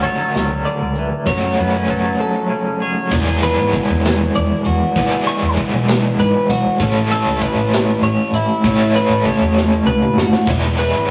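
Math rock and midwest emo in a straight 6/8 at 65 BPM, tuned to A4 = 436 Hz, this restless, intricate excerpt moves from Dmaj7 and F#m into E9 and Aadd9 before landing on E7. An up-front, double-tracked overdriven guitar carries a crunchy riff with tremolo, while a clean, compressed twelve-string electric spins arpeggios high above, a bright, twangy electric guitar with tremolo adds accompaniment until 5.0 s, and a foam-muted, amped picked bass enters at 0.4 s. A punchy, mid-forward acoustic drum kit with a medium-tuned snare and rolled-off top plays a fill at 9.6 s, all heard through a rough rehearsal-room sound with tube saturation and moderate stone-room reverb.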